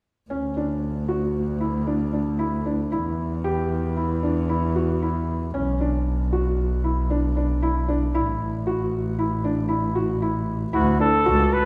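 Hopeful yet restless, this contemporary chamber piece in an uneven 5/4 sets a soft, mellow felt-muted upright piano's arpeggios over a smooth, bowed double bass with vibrato, until a clear, vintage-toned flugelhorn enters at 10.7 seconds with a scooped, pop-style solo melody, all bathed in the wet reverb of a scoring stage.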